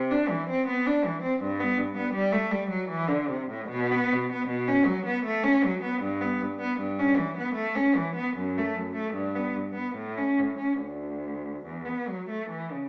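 Heard from further back in a stone room with a one-second wet reverb and a small-speaker sound, this short excerpt from a longer piece presents a single bowed cello, placed up front yet sounding distant. In a baroque-style suite movement in G major at 77 BPM in 3/4, the clear, vibrato-tinged tone moves smoothly and evenly between D2 and D4 across 12.9 seconds. The uneven beats and rubato give it a radiant, dance-like lilt.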